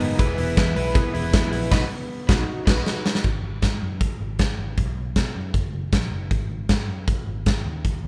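Wistful and restless, this 157 BPM jangly indie pop excerpt opens with a clean, compressed, direct-recorded electric guitar picking phaser-tinged arpeggios over a background of overdriven guitar and round, detuned sawtooth analog keys with chorus and a filter sweep, all supported from the start by a dark, foam-muted picked bass and a punchy, up-front big-room rock kit. After a band accent and drum fill ending at 3.2 seconds, the bass and drums carry on until about 8 seconds.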